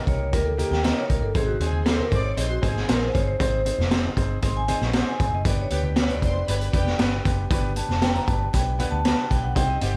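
Uptempo 1960s-style soul at 117 BPM in a danceable 4/4, where a ringing, metallic vibraphone with slow motor vibrato and slapback echo carries the solo melody over an intimate grand piano with audible action noise, a round, foam-muted picked electric bass, a gritty, saturated garage drum kit with a boomy kick and high-tuned snare, very quiet low-tuned congas, and a floating sul tasto violin section that enters at 1.6 s, all in a dark, warm production with light reverb, as chords move from Eb to Ab at 1.4 s and G at 5.5 s.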